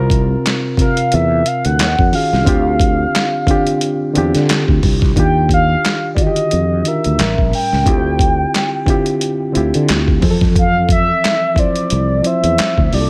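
A reedy, bright electric piano and a growly fretless electric bass open this sultry, soulful neo-soul and R&B excerpt in D minor, with a dusty sampler-style drum kit arriving almost at once. The groove sits at 89 BPM in 4/4 with a light sixteenth-note swing, the compressed kit pairing a thumpy kick and medium-tuned snare with hi-hat and handclaps, all given a gritty overdriven edge and placed up front. At 0.8 seconds a mellow, horn-like synth lead enters in a high register, its round, soft-attack tone sustained with vibrato, chorus and a slapback echo. The harmony drifts through lush extended chords such as C7sus4, Ebm11 and Dm11, then shifts at 5.2 seconds into a new passage built on Ebmaj9, A7b9, Dm11 and Fmaj7. The clean, direct electric piano and the amped bass hold the low and middle ground beneath the lead, while a digital ambience surrounds the whole mix.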